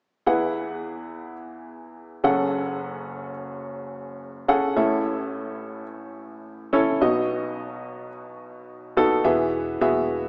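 This bittersweet, dramatic pop fragment, cut from a longer piece, moves at 107 BPM in 4/4 with a light sixteenth-note swing. A clear, woody upright piano sits up front with short sustain, carrying the accompaniment through Eadd9, F#madd9, A and B from 0.3 s. At 9.3 s, as the harmony returns to Eadd9, a dark, round, punchy foam-muted electric bass enters low in the mix, all within a wet scoring-stage reverb, small-room ambience and a small-speaker sound.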